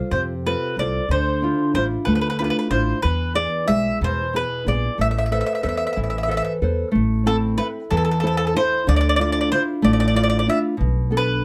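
A lilting 6/8 sways at 62 dotted-quarter beats per minute with a straight feel, giving this Italian folk serenade, cut from a longer piece, a slow, rocking gait in A harmonic minor. The mood is passionate and wistful, carried by a picked mandolin whose round, double-strung voice sings the melody in a narrow upper range. Beneath it, a fingerpicked nylon-string guitar supplies classical accompaniment from 0.0 s, while a pizzicato upright bass adds a woody, thumpy foundation on steel strings. All three acoustic parts sit up front in a light reverb that lends the trio an intimate, warm space. The harmony moves from F through Dmadd9 and E to Amadd9 before a second section begins at 6.9 s on A minor, passing again through Dmadd9 and closing on Bm7 at 10.8 s.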